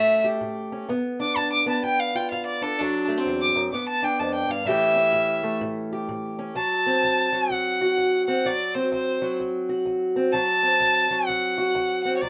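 A swung 4/4 groove drives this rollicking, swaggering fragment of acoustic country blues, where a rich, focused bowed fiddle with light vibrato carries the melody up front, soloing through the first 6.6 seconds, over a dark, boxy fingerpicked parlour steel-string guitar, all set in a moderate studio reverb.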